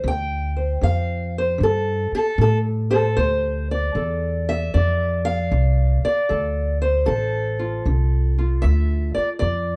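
A fingerpicked steel-string acoustic guitar with a boxy, parlour tone carries a soulful, mournful melody over a woody pizzicato upright bass, both up front, in this short acoustic country blues cut from a longer piece at 77 BPM in 4/4 with a swung eighth-note feel in D minor, tuned to A4 = 437 Hz, the guitar taking a solo over a Dm7 from 0.0 to 3.2 seconds before the next section begins, in a dark production with light reverb.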